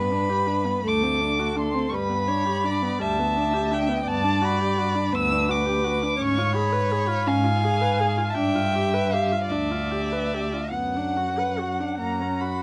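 A muted string quartet opens together in a solemn, melancholic slow romantic movement in 6/8, moving freely with rubato at around 46-57 dotted-quarter beats per minute. The first violin sings the veiled melody high up with vibrato and portamento, over a close, soft-edged second violin line and a dark viola accompaniment with light vibrato, while the nasal, up-front cello holds the bass. Light reverb surrounds the sound as the harmony drifts from G through Gmaj7, C#7/G# and G7 toward Bm/F# and a closing F# at 12.0 seconds in this passage cut from a longer piece.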